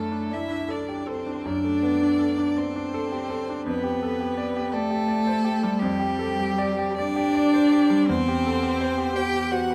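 From the first moment, a smooth solo violin with vibrato sings the lyrical melody over a clear, up-front bowed cello second line and a bright, worn concert grand piano with deep bass, together forming a warm, slow romantic piano-trio movement in G major that flows in a rubato 12/8 at 49-58 BPM in dotted quarters, bathed in a wet large-studio reverb with a 1.5-second tail, in a short passage cut from a longer piece.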